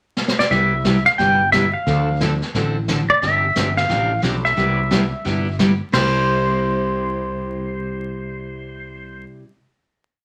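A swung 4/4 feel drives this short, playful western swing piece. A distant, roomy brush kit with dark cymbals opens with a fill at 0.2 seconds and keeps a brushed backbeat with snare sweeps until 6.2 seconds, while a growly, punchy fretless bass plays a two-beat root-and-fifth line with walk-ups. Up front, a twangy, clean pedal steel played with fingerpicks spins call-phrase motifs with volume swells and slide over a bright, full-bodied dreadnought picking four-to-the-bar rhythm, and the group settles on a final chord from 5.9 seconds amid down-home vinyl crackle and studio reverb.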